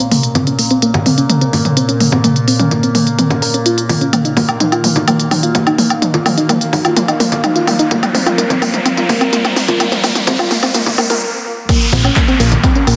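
Opening on a dark, swelling build in Bb minor at 127 BPM, this driving, dramatic melodic techno excerpt layers a soft, round pluck arpeggio with delay, a smooth background pad of sustained chords and a resonant drone of moving overtones, all pumping under sidechain, over a deep house kit of congas, toms, woodblock, handclaps, crash and smooth hats drenched in lush hall reverb. Filter sweeps and a riser lift the tension until a brief stop at 11.2 seconds gives way at 11.7 seconds to a drop where a punchy electronic kick hits up front alongside a very quiet gritty tambourine and snare, and a fat, detuned sawtooth bass joins up front at 11.9 seconds.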